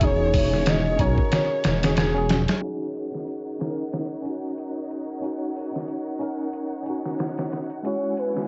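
A dry, gritty hardware sound with vinyl crackle and a dulled top end frames this smoky, hypnotic trip hop excerpt at 92 BPM in Eb phrygian, with a swung 16th-note feel and chords moving from E69 to Ebm7. A compressed, pitched-down sampler kit with a thumpy kick sits up front alongside a worn, slightly out-of-tune tine electric piano with overdrive, tremolo and tape echo, while a rich, bowed violin section holds sustained chords throughout. A deep, rumbling detuned saw bass drops out at 2.5 seconds, a ringing harp plays arpeggios in the background until 4.2 seconds, and a pure, breathy sine lead with chorus and portamento glides through brief melodic phrases at the start and again from 7.9 seconds.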